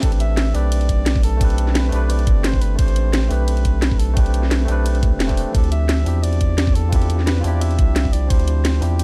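Liquid drum and bass at 174 BPM in 4/4 with a light 16th-note swing, driven by a knocking, layered electronic kick that drops out at 8.4 s and a small-room drum kit of cracking snare, bright hi-hats and ride cymbal. A deep, thick, saturated sub bass sits up front, while a clean tine electric piano, heard through its built-in speakers, moves from Am11 to Dm11 at 5.5 s in A minor. Over this, a solo flugelhorn carries a smooth pop-style melody with light vibrato and dub echo, giving this dark, dry production a melancholic, dreamy mood.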